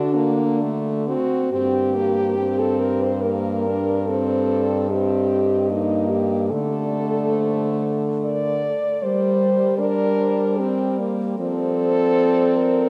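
Elegiac and yearning, this classical passage for horn quartet, cut from a longer piece, moves in a rubato 3/4 at 64-80 BPM in G minor, with a very quiet, mellow French horn melody of soft attack heard close, a second horn carrying an up-front line with vibrato, a present third horn adding accompaniment with light vibrato, and a warm, smooth-topped bass horn beneath, the four horns sounding together throughout and bathed in a long, wet cathedral reverb.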